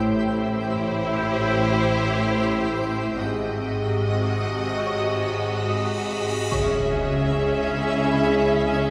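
A cinematic suspense score excerpt at 74 BPM in 4/4, eerie and ominous, moving from Am7 to G#7 and settling on C#m at 6.5 seconds. A close, focused violin section carries the vibrato-rich melody, while a more distant, lush violin line sits in the background beneath it, joined by a bowed viola section in accompaniment. The low end comes from a rich double bass section and a smooth, even cello section, while a bright, ringing fingerpicked concert harp repeats a low riff that stands out as the most prominent part. A twinkling granular texture with an octave-up shimmer and slow attack holds sustained chords in the background, and a very quiet celesta adds delicate, bell-like touches from a boxy small room. A huge, dark cymbal swell begins at 5.0 seconds and lands as an impact at 6.5 seconds, where a French horn section enters with sustained chords, all set in a wet concert hall reverb.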